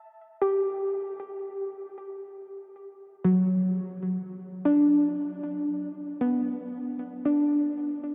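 In free time, this short ambient passage in E minor drifts along with a spacious, serene mood. A single soft, round pluck carries the piece alone from 0.4 s, moving between F#3 and G4 over a rootless Em7 before shifting to Bm at 6.9 s. Its tone blends triangle, sine and sawtooth waves with a noise layer and a filter sweep, giving a gentle, dark colour with a fast attack and decaying notes. Subtle chorus and delay sit on the pluck, which stays up front in the mix. A huge, wet ambient reverb with a 7.4-second tail surrounds the sound, and the music is cut from a longer piece, ending at 8.1 s.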